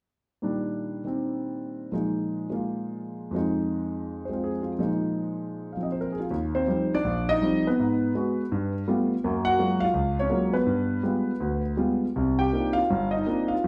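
A close, intimate concert grand piano carries this relaxed, swinging solo jazz fragment, its deep bass and audible action noise giving the playing a natural, up-front presence. The performance moves with a loose, rubato swing through rich extended harmonies, settling on Ebmaj7/Bb at the start and shifting into a second section at 6.3 seconds that passes through Gbmaj9 and G7b9 before resting on Cm11 at 12.2 seconds. A wet stone-room reverb surrounds the live performance, lending the piano a sense of real space.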